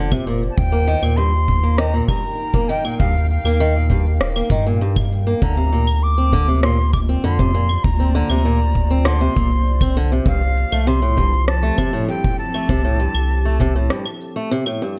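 A straight 4/4 groove of boomy, saturated kick drum and overdriven electronic claves, shaker and rim click drives this pastoral, hopeful folktronica piece, with a round, up-front sub bass with tube saturation underneath until it drops out at 13.9 s for a brief break. A boxy, picked swing-style acoustic guitar plays arpeggios with audible finger squeak over a warbling, nostalgic tape-like pad of sustained chords, softened by chorus, phaser and reverb in the background. From 0.5 s an airy silver concert flute carries the melody with vibrato and an unsteady tone, roughened by 12-bit sampler grit and trailed by delay, in a dark, lightly reverberant production.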